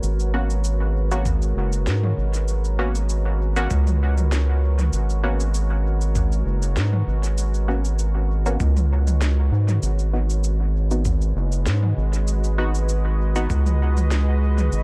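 A dry excerpt of meditative, hazy ambient dub in a lightly swung 4/4, where a round, wave-folded analog bass sits up front beneath a deep, detuned sawtooth pad bathed in chorus and its own reverb, while muted, filter-plucked chord stabs with chorus and dub echo arrive at 0.3 seconds, an electronic kit of cabasa, woody snare and toms trails dub echo, and a muffled, tape-warm sampled kick thumps in the background from 1.3 seconds.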